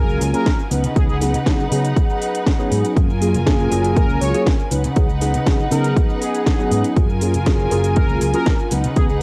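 Feel-good and sunny, this short excerpt of filtered disco house moves at 120 BPM in a straight 4/4, sitting in F# major and rocking between F#maj9 and C#9sus4 chords. A bold, fat analog synth brass carries the melody with a detuned sawtooth edge, chorus and a filter sweep, while a mellow tine electric piano comps beneath it through a phaser. A rich, bowed studio string section holds smooth sustained chords with gentle vibrato, and a round, dark fingered electric bass anchors the low end. The house drum kit brings a cracking snare, metallic hats and shaker from 0.1 seconds, and a punchy electronic kick sits up front from 0.5 seconds. Sidechain pumping makes the synth brass, electric piano, strings, bass, hats, cymbals and percussion breathe with the beat, and most parts carry a tape-warm cassette haze, all within a light reverb and digital ambience that give it a homemade feel.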